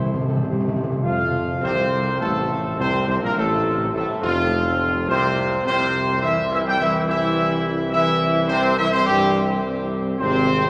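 Classical brass music, solemn and triumphant, moves at 105 BPM in a straight 4/4 in F major, heard here as a short cut from a longer piece. A trumpet section with a dark, distant tone carries the melody up front, while a punchy trombone section and a mellow French horn section, set further back, hold sustained chords beneath it. A smooth-topped tuba with light vibrato anchors the bass throughout. Timpani played with soft mallets give a round fill on C in the opening second, before the harmony settles on F at 1.0 seconds, moves to C at 5.7 seconds, and turns to A-flat near the close. The whole ensemble sits in a cathedral-like space with a long, wet reverb that lends the brass a grand, resonant halo.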